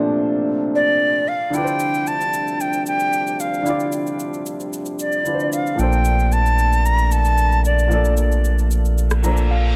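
Set in a light reverb, this hypnotic, deep amapiano excerpt at 113 BPM in D minor pairs a polished grand piano with a mellow French horn section holding sustained chords beneath an airy, expressive jazz flute melody with vibrato and digital delay, joined by a tape-tinged electronic shaker and rim click from 1.5 seconds and a thick, saturated sub bass up front from 5.8 seconds, before a piano fill and a reverse cymbal arrive and the drums mute at 9.5 seconds.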